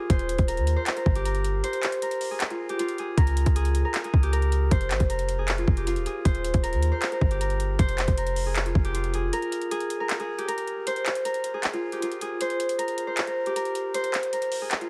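A bright, ringing Celtic harp opens this dark, brooding trap piece at 0.0 seconds, fingerpicking a melody in F minor between F4 and C5. A trap drum kit and a deep, boomy 808-style bass enter almost at once, setting a half-time feel at 156 BPM in 4/4, tuned slightly low to A4 = 438 Hz. The electronic kit pairs a hard-clipped kick with metallic hi-hats and handclaps, while the clean, sine-like bass has a fast attack and mellow decay, reaching from Eb1 to Eb2. The harmony moves from Eb through Bbm7/Db, Fm and Eb to F5, broken by a short break at 1.6 seconds and a longer one once the bass stops at 9.3 seconds. Harp, drums and bass all sit up front in a digital ambience with a heavily compressed, radio-like sound, and the passage is cut from a longer piece.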